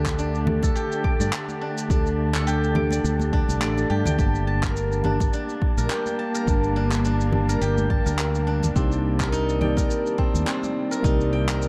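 Dark, lush hall reverb surrounds this short cut from a longer piece of mystical organic downtempo at 105 BPM in 4/4, with a gentle 16th-note swing and tuning set to A4 = 443 Hz. Muted, felt-like synth keys carry the accompaniment with a soft, intimate tone, chorus, tape echo and sidechain pumping, while a tense, string-like bowed drone holds sustained chords in the background with vibrato, its own reverb and the same pumping. A steel-string zither played with fingerpicks rings out silvery arpeggios through a low-pass filter and tape echo, and a breathy, wind-like tuned noise texture hovers faintly on a single high pitch. Underneath, a round, punchy fretless electric bass sits up front with sidechain pumping, joined at 0.1 seconds by a deep, layered electronic kick drum and tape-warm electronic handclaps and shaker re-recorded in a small room. Close, dry congas struck with hard hands come in at 0.5 seconds from the background, as the harmony moves from Dsus4 to Gmadd9 and settles on Cm7 at 8.8 seconds.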